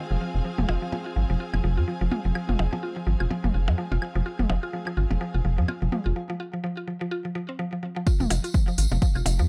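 This short cut of quirky, clinical minimal techno opens at once with a woody, mallet-like synth pluck riff treated with chorus, phaser, digital delay and sidechain pumping, set over a lush, bowed symphonic string section with vibrato and a very quiet, swarming, detuned drone. A rubbery, hollow square bass sits up front, pumping with sidechain, while electronic toms, percussion blips and claves, echoed by digital delay, add a swung, playful pattern over a single minor chord. A filter sweep runs across the synth arpeggio sound through the opening stretch, and the strings drop out at 6.2 seconds, leaving a break. At 8.1 seconds the drop lands with a punchy, overdriven electronic kick and a jingly acoustic tambourine, joined moments later by metallic, tape-tinged hi-hats dulled by a low-pass filter, as the harmony falls away. The production is dark and dry, with little reverb.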